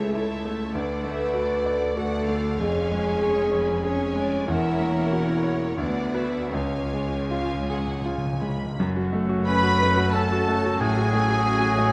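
Passionate and lyrical, this romantic movement for piano and orchestra unfolds in a flexible, rubato triple metre, heard here as a short passage cut from a longer piece. A clear, up-front concert grand piano carries the melody with a deep bass, joined by a distant, smooth symphonic violin section singing above it, while a focused chamber violin section traces a second line and a close, very quiet viola section fills in the accompaniment. A dark, tight French horn section holds sustained chords throughout, anchored by a bright, intense cello section and a rich double bass section underneath. At 6.5 seconds a timpani fill with soft mallets and a round, dry tone leads into the next section, where a mellow trombone section adds soft sustained chords from 8.8 seconds. From 9.5 seconds the woodwinds gather with a hollow concert flute, a vintage-toned oboe in the background and a very quiet, dark clarinet on second lines, while a distant, roomy trumpet punctuates with stabs, all set in a moderate scoring-stage reverb.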